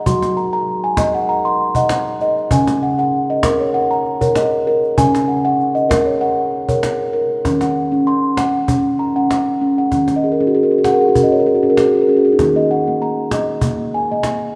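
Hypnotic and meditative, this world piece is carried by a steel tongue drum whose round, pure, ringing arpeggios, played with soft rubber mallets, sit up front across a broad range, with a fill from 10.1 to 12.4 seconds. A snappy cajon with snares, struck with soft hands, sits lower beneath it. The whole passage, cut from a longer piece, is bathed in a wet concert hall reverb as the chords settle from Gb toward Ebm7 and close on Ebmadd11.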